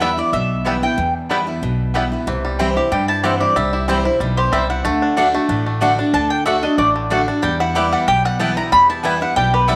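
Bluegrass in E minor at 186 BPM with a light swing, haunting and lonesome, cut from a longer piece that moves through Em, C and D before returning to Em at 7.4 seconds. A bright, up-front mandolin carries the melody on double strings while a second, mellower mandolin adds stabs, a crisp dreadnought guitar with fresh strings and audible finger squeak picks the accompaniment, a twangy banjo played with fingerpicks plays percussive arpeggios, and a dark, thumpy upright bass holds the low end. Everything sits in a small room with a moderate echo-chamber reverb that lends the ensemble a lingering, spacious tail.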